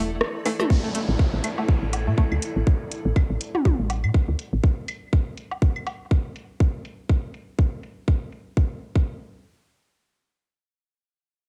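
A tight, layered electronic kick drum sits up front in this cool, quirky minimal techno excerpt at 122 BPM, with a swung 16th-note feel. It enters at 0.7 s alongside a faint electronic downlifter. From the start, a woody, round FM bass pumps low and dark under the sidechain. Above it, a twangy, string-like resonator pluck warbles over an Asus4 chord, bright and vintage through chorus, phaser and analog delay, with a filter sweep. A cloudy granular pad drifts quietly higher up, evolving and blurred in its own reverb. A booming analog drum machine adds metallic, tape-tinged hats, rim clicks and shaker, muffled by low-pass filters, while overdriven electronic bongos, claves, toms and woodblock ring through analog delay. Both drum parts sound re-recorded in a large room, and the whole is a cassette home recording in a digital ambience, with the harmony dropping away at 8.6 s.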